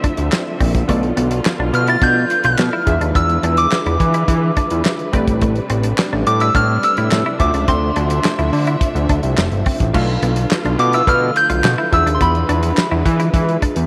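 Cut from a longer early-eighties boogie funk piece, this late-night, slick passage opens with a damped, dry drum kit up front (tight kick, fat snare, handclaps, hi-hat, dark cymbals and a crash), a punchy, detuned polysynth comp with chorus, a clean, compressed semi-hollow guitar riff with lush chorus, and dark, bowed studio strings holding sustained chords in the background. A thick sawtooth analog bass joins up front at 0.2 seconds, and at 1.7 seconds a soft, pure FM bell melody arrives, warbling and decaying through chorus and slapback echo. Light reverb and small room ambience surround the parts as the harmony cycles through Dm9, Bm7b5, E7b9 and Am11.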